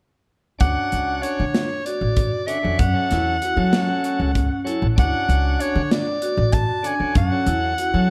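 Cut from a longer progressive piece in 7/8, this brooding, intricate band passage opens at 0.6 s with an up-front soprano saxophone singing a smooth, vibrato-tinged jazz melody through slapback echo and digital delay, over a shouting, lightly overdriven tonewheel organ with its rotary speaker stopped, a dark, ringing vibraphone spinning arpeggios with its motor off, a woody, thumpy pizzicato upright bass, and a tight, rolled-off small-room drum kit of hi-hat, kick and snare, the whole band sitting in light reverb and studio ambience.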